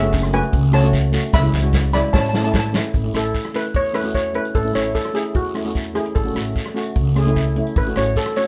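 Calypso at 149 BPM in A major, carefree and festive, cut from a longer piece, with a shimmering lead steel pan struck with hard rubber sticks sitting up front and taking a solo from 2.9 seconds over a mellow double-seconds pan played with soft rubber sticks, a woody, thumpy pizzicato upright bass on gut strings, an unplugged drum kit played with bundle sticks that adds a fill from 1.3 seconds, a close, raspy guiro, and moderate studio reverb, moving from F#madd9 through C#m7 and A to F#m7/A.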